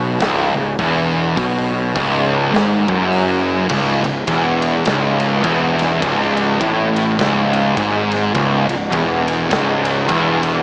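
An up-front, distorted fuzz guitar carries the low, sludgy riff in this ominous stoner and doom metal piece, cut from a longer recording and set in a swung 4/4. A second, darker fuzz guitar also plays the riff at a very quiet level before dropping out at 3.7 s, while a double-tracked overdriven guitar sits in the background. Underneath, a fingered electric bass with overdrive and fuzz adds a growly, punchy bottom. A big acoustic rock kit joins at 0.2 s, with a punchy kick, a medium-tuned snare and bright crash, ride and hi-hat cymbals. The whole mix has a small-speaker sound, with moderate large-studio reverb and a touch of small-room ambience.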